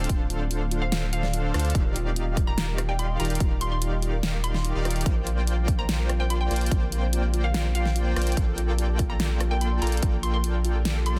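An excerpt of emotional, bittersweet future bass in G minor at 145 BPM with a half-time feel opens on a very quiet, ethereal pad holding sustained chords over Dm7, Ebmaj9, Bb69 and Gm9/Bb, with a dark, round pluck arpeggiating in the background through chorus and delay, a smooth, detuned supersaw riff and a thick, saturated sub bass up front, all three pumping to a punchy electronic kick that enters at 0.1 seconds and stops at 10.1 seconds, alongside a big-room dance kit with hi-hat, rim click and a huge snare, while a hollow, bouncy square-wave pluck carries the mellow melody from 0.8 seconds in a digital ambience under a dense, heavily limited modern master.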